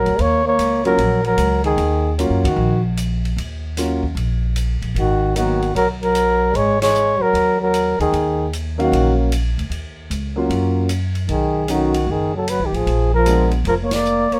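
A mellow flugelhorn carries the melody up front with vibrato and a soft attack, alongside a breathy, whispered trombone second line with scooped notes, over woody pizzicato upright bass and an open jazz kit with dark cymbals and a boomy kick, while a concert grand with deep bass and long sustain accompanies from 0.8 to 5.6 seconds and again from 8.8 seconds, in a moody, smoky small-group swing excerpt with light reverb and band accents.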